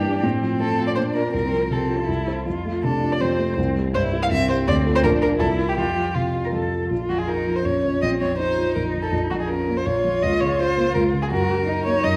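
Set in a wet recital-hall reverb, this lively, spirited fragment of a classical-period piano trio movement moves briskly at 163 BPM in 3/4. An expressive bowed violin sits up front with the melody, its vibrato and gliding portamento matched by a close, warm cello on the second line. A worn, mellow baby grand supplies the accompaniment with audible action noise, as the music shifts from F major into B-flat minor at 6.9 seconds.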